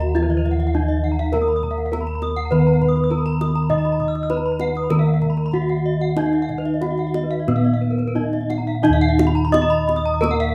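A straight 4/4 pulse moving between 86 and 102 BPM drives this brilliant, hypnotic excerpt of Balinese gamelan in Eb pelog, tuned to A4 = 437 Hz. Four bronze metallophones, each treated with plate reverb, fill the upper layers. A wooden-mallet lead carries the melody with airy, shimmering beats from its paired tuning, and a boxy accompaniment part sits further back, while two horn-mallet metallophones spin bright arpeggios high above, one of them close-miked and full. Round, mellow bossed gongs sit up front on the bass line, and a tight kendang stays in the background of this rough home demo with its small-room sound.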